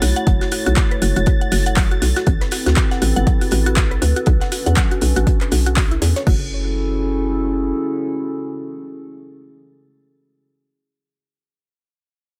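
An up-front, overdriven electronic kick enters at 0.3 seconds beneath a hollow, bouncy FM bass, metallic-hatted deep house claps and crash, a very quiet dry 70s kit, woody mallet-like pluck arpeggios under a filter sweep, a silky string-machine haze and a dark, detuned analog pad that outlasts every other part, ringing on to 10.4 seconds, the pitched parts pumping through F#m9, Am9 and Bm9 in this deep, late-night swung deep house excerpt at 120 BPM in F# minor.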